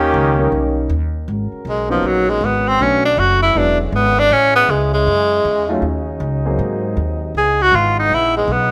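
Brassy and dramatic, this short big band swing passage in G# minor moves at 158 BPM with a moderate swing on the eighth notes. A brilliant trombone section opens up front with a brief, lightly vibrato figure over a woody pizzicato upright bass, which carries the low end throughout. A warm grand piano adds accompaniment from 0.4 seconds to 6.9 seconds. At 1.3 seconds the harmony shifts to G#m11 and a dark, vintage-toned trombone section settles into soft-edged sustained chords with vibrato. A bright tenor saxophone then takes the melody as a soloist from 1.7 seconds, its vibrato and gentle attack riding up front over the ensemble through changes to Amaj7, D#m7 and C#m9, all in a light reverb.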